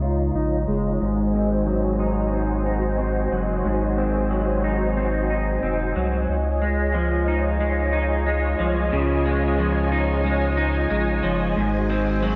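A straight 4/4 pulse at 91 BPM carries this short dream pop passage in Db major, cut from a longer piece, and its mood is ethereal and floating. An electric guitar at the edge of break-up plays fingered, twangy arpeggios up front, colored by analog chorus, a low-pass filter and tape echo. Beneath it, a round sine sub bass holds deep, sustained notes with a fast attack, also sitting up front. A vintage string machine voiced as violas spreads soft-attack, dark sawtooth chords with ensemble chorus, a moving notch and a low-pass filter, lying lower in the mix than the guitar. A filter sweep runs through the whole passage, and the harmony moves between Dbadd9 and Ab7, returning to Dbadd9 at 6.3 seconds. A moderate, lush hall reverb with a 2.5-second decay wraps the sound in a warm, spacious glow.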